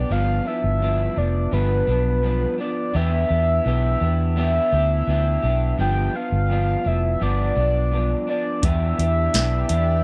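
A round, detuned octave-layered synth lead carries the melody with subtle chorus and tape echo over a dark, slightly broken-up electric guitar through a small old amp, lush with chorus and vibrato, and a foam-muted fingered electric bass up front, while a soft vintage rhythm box with deep kick, crisp snare and metallic hats and an airy sawtooth unison pad with chorus join at 8.6 seconds, giving this laid-back, sunny bedroom-pop cut at 84 BPM a dry, close 1970s-style studio sound as it moves between G7 and Em7.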